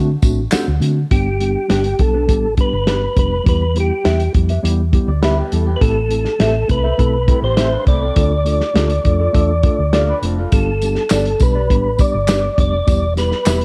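Uptempo 1960s-style soul with a danceable, joyful feel, this short excerpt from a longer piece sits in a small room with a dark, warm production. An up-front drum kit, dry and muffled with a tight kick, a medium-tuned snare and hi-hat, drives the groove alongside a round, dark hollow-body bass played with the fingers. A mellow tine electric piano fills out the accompaniment through its built-in speakers, while a clean, dark electric guitar adds stabs in the background, coloured by analog chorus and slapback echo. From 1.1 seconds a lightly overdriven tonewheel organ takes the melody up front, its percussive third-harmonic attack spun through a fast rotary speaker with chorus vibrato. Between 5.1 and 10.7 seconds a bright, twangy picked guitar through a small old amp plays a slightly broken-up riff bathed in spring reverb. Tambourine, egg shaker and group handclaps, close and dry, mark the opening second and return at 10.5 seconds.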